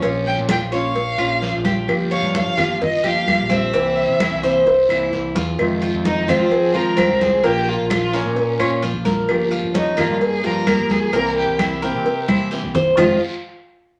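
Latin music in the Cuban son and guajira vein, this excerpt from a longer piece moves at 130 BPM in a straight 4/4 in F minor, with a sultry, nostalgic mood. A distant, bowed violin carries the melody with vibrato and portamento, played expressively by one player, while a full-bodied, fingerpicked nylon-string guitar provides accompaniment and an up-front Cuban tres picks metallic arpeggios on its double strings. A growling FM bass with a fast attack and sustained notes anchors the low end. Close, dry congas struck with hard hands lead the percussion, joined by a very quiet, tight cowbell and bongos, a raspy guiro set back in a large room, and woody claves that enter at 0.5 seconds in the background. The harmony cycles through Bbm, Gm7b5 and C7 before resolving to Fm7 at 5.6 seconds, with drum fills marking the ends of phrases, the second arriving at 12.3 seconds. A studio reverb adds a moist sheen to the mix.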